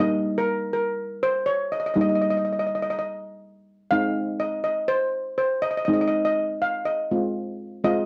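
A warm, shimmering steel pan carries the melody in this short calypso fragment, struck with hard rubber sticks for a metallic ring that sits up front in a boxy small-room sound. A second steel pan, a mellow double seconds played with soft rubber sticks, supplies the accompaniment in a lower register, its tone soft, vintage and band-limited yet still close and present. The mood is carefree and sunny, moving at 122 BPM in 4/4 with a light swing on the sixteenths, in Ab major and tuned slightly sharp at A4 = 443 Hz. The harmony rests on Eb before shifting to Ab6 at 3.9 seconds, and both pans play throughout the 8.1-second clip, which is cut from a longer piece. Both parts carry the character of cassette tape, and a wet studio reverb with a 0.6-second decay lends space to this homemade recording.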